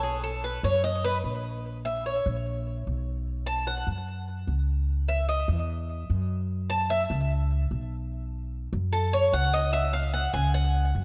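From the first second, a bright, metallic Cuban tres picks tape-echoed arpeggios as a solo over a dark, woody, thumpy pizzicato upright bass on gut strings, both up front in this danceable, warm Cuban son and guajira excerpt at 148 BPM, moving between B5 and C#m chords and soaked in a lush, dreamy hall reverb.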